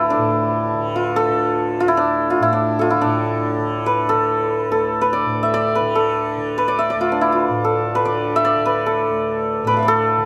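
Introspective and solemn, this short Hindustani classical excerpt in raga shivaranjani on D moves at 144 BPM in a straight 7/4, with a bright, hammered santur ringing up front in the melody from D4 to E6 over a warm, buzzing tanpura drone softly plucked between D2 and D3, both sustained throughout, tuned to A4 = 442 Hz, and touched by light reverb as the music shifts into a new section at 3.0 seconds.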